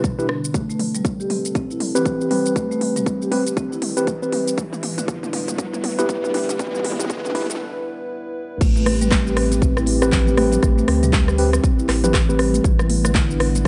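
Driving and spiritual, this afro house passage builds for 8.6 seconds as filter sweeps move across a woody soft-mallet marimba arpeggio and a moody, nasal analog pad, alongside mellow tine electric piano stabs with tape echo, a punchy up-front kick, a smooth-hatted deep house kit fill and an electronic riser, then after a short break drops into a round sine sub bass and background congas, set in a dry, gritty hardware recording with light digital ambience.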